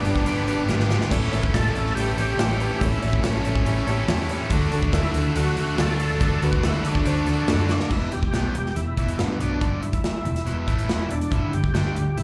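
Swaggering and gritty, this classic rock passage in E minor drives at 141 BPM in a straight 4/4, captured live through a club PA with light reverb and lossy artefacts, as a punchy, up-front drum kit with bright cymbals and a fill near 0.7 seconds anchors a round, hollow-body fingered bass and a cranked stack guitar riff. A thick, overdriven tonewheel organ carries the melody with key click, chorus vibrato and a slow rotary speaker, while a second distorted guitar, a dark woody upright piano, a barely audible string-machine cello pad and a very quiet grainy tube shaker fill out the background. At 7.9 seconds the piano, second guitar and strings drop away, leaving organ, stack guitar, bass and drums to push through an E minor stretch toward a closing G5.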